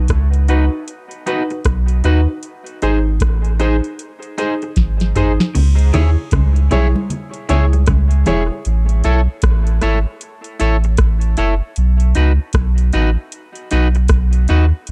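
A dark, dry mix sets a spacious, heavy dub reggae groove at 77 BPM in C# minor, with a round sine sub bass and an overdriven analog rhythm box up front, its deep kick, crisp snare and metallic hats punctuated by a drum fill just before 5.5 seconds. A twangy, slightly broken-up electric guitar and short, smooth grand piano stabs, both filtered and soaked in dub echo, carry the accompaniment. From 5.5 to about 8.5 seconds a clean, picked electric guitar riff with tremolo and ringing, close congas sit in the background before the piano drops out and the bass, drums and gritty guitar carry the rest of this excerpt from a longer piece.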